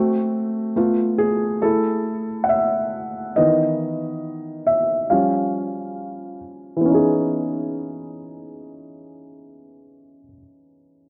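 Hazy and nostalgic, this short cut from a longer hip hop piece moves at 69 BPM in 4/4, with a swung sixteenth-note feel in C# minor. A soft, felt-muted upright piano sits up front as the sole accompaniment, its mellow, intimate tone colored by cassette tape and a low-pass filter, with a filter sweep across its solo opening from 0.0 to 6.8 seconds. Chords such as Am6, F#m9/A and Fsus2 drift past before settling on C#m9 at 6.8 seconds, all bathed in a lush hall reverb within a rough home-demo mix.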